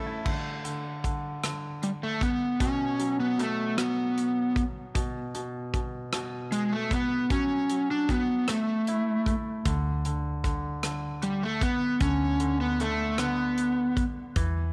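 Heartfelt and romantic, this slow six-eight pop ballad at 51 BPM, cut from a longer piece, sets an up-front overdriven slide guitar melody from 1.8 seconds over a brilliant, polished concert grand piano, an acoustic drum kit with crash, hi-hat, a punchy kick and rim click, a full-bodied picked steel-string acoustic guitar heard only briefly in the background at the start, and a dark, round, foam-muted electric bass that returns at 9.7 seconds, all set in a moderate echo chamber reverb.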